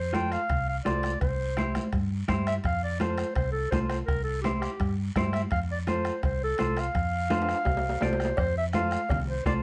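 A festive, danceable cumbia in F major opens at once on a warm, soft-attacked clarinet carrying the melody up front, with a smooth top and a classical poise, over a dark, round and punchy hollow-body electric bass sitting low and forward. Moving at 168 BPM in a straight 4/4, the harmony rocks between F and C as a clean, compressed electric guitar with a scooped, fingered tone fills in the accompaniment just beneath the lead. The percussion bed pairs a soft-beatered acoustic bombo with hard-handed, ringing congas heard in a live room, plus metal-shelled timbales and cowbell that sound close and dry. A raspy, vintage-toned guiro sits far back in the mix. A drum fill arrives at 7.3 seconds and leads into a new section at 8.4 seconds, shortly before this brief cut from a longer piece ends, all framed by a moderate studio reverb and a mellow, rolled-off top end.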